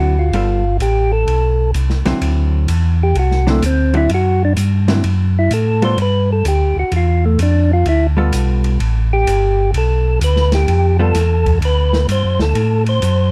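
Swinging and soulful, this soul jazz organ trio excerpt features a percussive tonewheel organ soloing over a mellow, round tonewheel organ bass line with key click, both turning through a slow rotary speaker, while a dark, compressed hollow-body jazz guitar comps until 11.1 seconds and an open, small-room jazz drum kit with dark cymbals and a punchy kick sits low beneath the close, dry sound as the chords move from G9 to D9, return to G9 and settle on D7.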